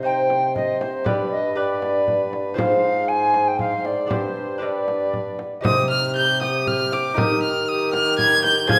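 A classical, renaissance-style consort dance in triple time with a rustic, courtly mood, this short cut from a longer piece has an airy, wooden alto recorder carrying the melody from 0.1 seconds, distant and expressive, with vibrato and a tongued chiff. Close and up front, a single warm violin bows a nasal, reedy second line in gut-string period style, while a bright, delicate fingerpicked lute on doubled gut strings supplies the accompaniment and a mellow, punchy bassoon holds the bass. A dry frame drum joins at 0.3 seconds, and a wet recital hall reverb surrounds the ensemble.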